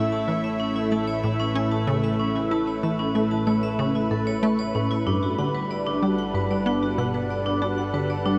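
Ambient, sequencer-driven space music with a cosmic, expansive mood, this excerpt sets a lush, detuned unison pad holding sustained chords against hard-mallet vibraphone arpeggios that ring metallic and airy with a fast motor vibrato and tape echo. A squelchy, resonant blip pluck repeats a riff with chorus and tape echo, while an evolving analog drone with pulse-width modulation supplies a mellow bass beneath. The harmony moves from A to Gmaj7 at 5.1 seconds, all bathed in a huge, wet reverb.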